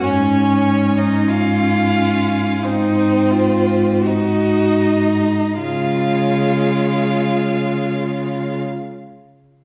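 Classical chamber music, this is a slow romantic movement for string quartet in Db major, moving at roughly 37-48 BPM in 4/4 with a rubato feel and a warm, serene mood. The first violin carries the melody with a smooth, even, vibrato-rich tone, while the second violin plays a clear, focused second line beneath it. The viola adds a full-bodied, focused accompaniment, and the cello anchors the bass with a rich tone that sits up front yet has a distant quality. All four players bow with vibrato together until 8.6 seconds, and the tempo slows over the opening 5.6 seconds as the harmony moves from Db/Ab to Ab7 and settles on Db. The quartet is heard from further back in a recital hall, wrapped in a generous reverb that gives this cut from a longer piece a spacious, glowing finish.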